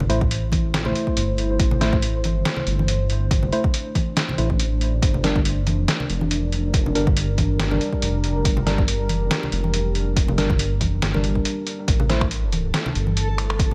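A rumbling, saturated detuned saw bass and bright, close congas open this dark, heavy deep dubstep excerpt at 140 BPM, set in a swung half-time feel in A phrygian; they are joined at once by a punchy, layered electronic kick, a muffled, pitched-down sampler-style kit of finger snaps, hi-hat and snare, a worn, slightly out-of-tune tine electric piano playing stabs through dub echo, and a moody, chorused ambient pad holding sustained chords over Am and Gm, before a reversed, granular swelling texture drifts in at 12.6 s.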